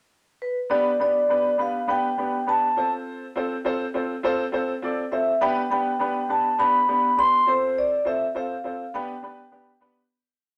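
A ringing, metallic vibraphone played with medium mallets and its motor off opens this uplifting, danceable soul piece at 0.4 seconds with call-like motif phrases up front in a boxy small-room tone, joined at 0.7 seconds by a clear, worn grand piano comping close-voiced eighth-note chords with long sustain over a straight 4/4 groove that moves between G and F in moderate studio reverb before a fade-out from 7.8 seconds.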